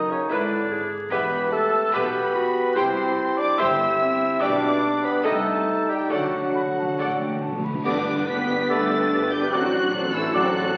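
At a fast 144 BPM in 4/4 with a rubato feel, this dramatic yet spirited and graceful romantic orchestral fragment in G major sets a lush, vibrato-rich violin melody over a distant, intense second violin line, vintage oboe and clarinet, a mellow bassoon, a smooth viola section, a focused cello section, a distant double bass section and background French horn chords. Dark, very quiet cymbal swells, clash cymbals and concert bass drum arrive at 4.4 seconds, hard-mallet timpani fill from 6.1 seconds, and a hollow silver flute joins. A faint trombone section enters at 7.8 seconds and a close-miked tuba at 7.9 seconds for a band accent, all heard through a wet scoring-stage reverb and the crackle of a very old 78 rpm record.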